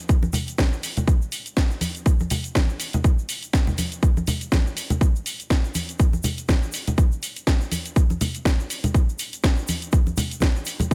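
A house drum kit of cabasa, hi-hat and cracking snare opens this cosmic, sensual nu-disco excerpt at 122 BPM with a light swing on the 16ths, joined at 0.1 s by a punchy, up-front electronic kick with a tape-warm, small-room character and by a bright, close, dry tube shaker and congas, all in a tight space with little reverb.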